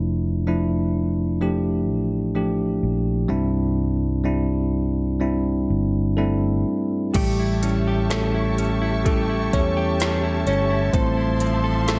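The production is dark and softly reverberant, a short slice of a hopeful, emotional pop ballad with a straight feel. A bell-like tine electric piano, bright and clean up front, carries the opening over Dmadd9/F and Cadd9 harmonies alongside a punchy, amped fretless bass sitting close in the mix. At 7.1 s a smooth R&B drum kit arrives with an electronic, produced character: soft kick, woody snare, silky hi-hat and a crash cymbal, all with a tape-warm tint and the air of a large room. From 7.2 s the electric piano steps forward into a solo as a lush, bowed studio string section adds sustained chords with gentle vibrato and an even top. A direct-recorded clean electric guitar, picked and compressed, plays arpeggios as the harmony moves through A7 to Fmaj7/A.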